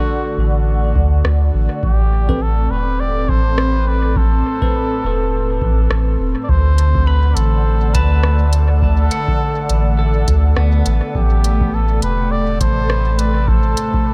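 Bathed in digital ambience, this spacious, meditative ambient dub fragment sets a veiled, cup-muted trumpet solo with light vibrato and dub echo over a breathy, chorused pad, bell-like electric piano stabs that stop at 6.5 seconds, a round sub bass up front, a deep background kick and crisp electronic hi-hat and rim clicks, while a slide pedal steel guitar with volume swells joins at 7.1 seconds and a dark, wind-like noise texture enters at 7.6 seconds.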